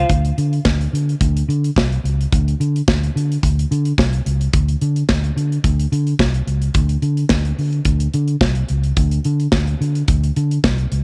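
This disco excerpt sits in a studio reverb, the two parts placed close in the mix and tuned slightly below standard pitch at A4 = 436 Hz. The mood is driving and sultry, in a straight 4/4 feel. A fingered electric bass opens at 0.0 seconds, its dark, round, amped tone kept up front as it moves between C2 and D3. The drum kit enters at 0.1 seconds: an acoustic set heard in a small, airy room, polished in sound, with hi-hat, a medium-tuned snare and a punchy kick. Bass and drums carry the passage together through to 11.0 seconds, cut from a longer piece.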